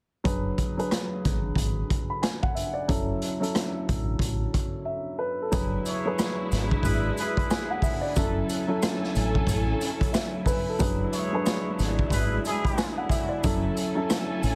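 A dark, woody upright piano opens this excerpt at 0.2 s, its smooth vintage tone filtered and softened by a cassette-tape coloring over an E9/F# chord that moves to F#m7. Almost at once a round, punchy fingered electric bass and a gritty, saturated garage drum kit join in a reflective yet tough boom-bap groove at 91 BPM in 4/4, swung on the sixteenths. The drums sit up front with a punchy kick, a medium-tuned snare, rim clicks and hi-hat in a small, pumping room with a rolled-off top, and they drop out briefly from 4.9 to 5.5 s. When they return at 5.5 s over an E7/F# chord, a close, lush bowed string section adds sustained chords with vibrato, while quiet, dry maracas sit in the background. A distant, mellow trumpet section follows with tight stabs carrying light vibrato and a digital delay, and the harmony settles back on F#m7 near the close. The whole mix has a heavily compressed, radio-like sound with light reverb.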